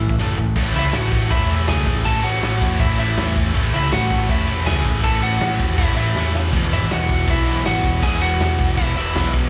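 A loose, gritty indie drum kit sits up front with a punchy kick and a rolled-off top, alongside a growly overdriven picked bass in this rowdy, rebellious punk rock excerpt, heard as a live gig through the venue's PA with club reverb. Behind them, a crunchy overdriven guitar and a bright distorted guitar with slapback echo play riffs, while a double-tracked semi-hollow guitar with the same echo sounds briefly at the start and returns at 6.5 seconds as the chords move from A to E. Over the top, a compressed, slightly broken-up lead guitar with slapback echo carries the melody, and drum fills land at 0.2 and 6.2 seconds.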